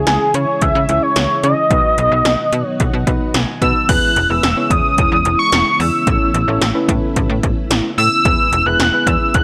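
A dry, gritty hardware recording with digital ambience frames this bright, wistful synth-pop passage cut from a longer piece, where a bold, retro octave-doubled sawtooth lead with vibrato, chorus and analog delay carries the melody up front. Beneath it sit a slap-like FM bass with a snappy, metallic attack and 80s electronic pad drums with a punchy kick, gated snare and tape-warm character, while soft, round electric-piano-like synth keys with chorus accompany throughout, adding a fill from 2.3 to 3.9 seconds. A mellow, organ-like ensemble organ-string holds sustained chords in the background as the harmony moves from C#m and B into E6 and Aadd9 after 3.9 seconds.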